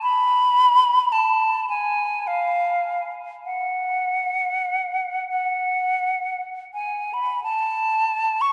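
A lone concert flute carries this short classical fragment, its hollow, pure tone sitting up front with vibrato and clearly tongued notes. The mood is mournful and yearning, and the line moves freely in 6/8 with expressive rubato, staying in the upper register between E#5 and C#6. The flute sounds throughout the 8.5 seconds, with a new passage beginning at 7.4 s just before the fragment breaks off. A long cathedral reverb, decaying over 4.7 seconds, surrounds the flute in a vast, echoing space. The top end is gently rounded off, giving the recording a soft, unforced sheen.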